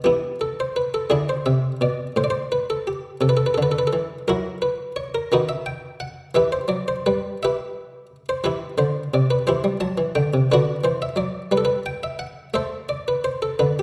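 This classical, baroque-style suite movement for solo harpsichord moves in an introspective, solemn mood, in E minor and 6/8 at 58 BPM counted in dotted quarters, with a free, rubato feel. The harpsichord plays with its buff stop engaged, giving a muted, lute-like tone in the French style, plucked and dry and placed up front, ranging from A2 to A5. Opening on a lone E5, the harmony settles on A minor at 2.2 seconds, then passes through F#add11 and D# minor before returning to E minor at 6.4 seconds. C, C/E and D follow, a brief unharmonized moment arrives, and A minor sounds at 12.6 seconds. A recital hall's reverb, with a 1.6-second decay, lends the space around the instrument a gentle bloom. The fragment is cut from a longer piece and stops at 13.8 seconds.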